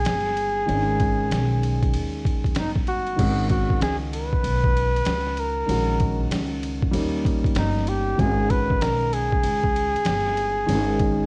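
A mellow flugelhorn with light vibrato and scooped notes carries the melody up front over a dark, intimate grand piano with audible action noise, a woody pizzicato upright bass with tube saturation, and a muffled, pitched-down sampler-style kit with a thumpy kick, giving this swung jazz-hop excerpt a cool, mellow mood, all wrapped in small room ambience and worn cassette tape with warbly pitch drift.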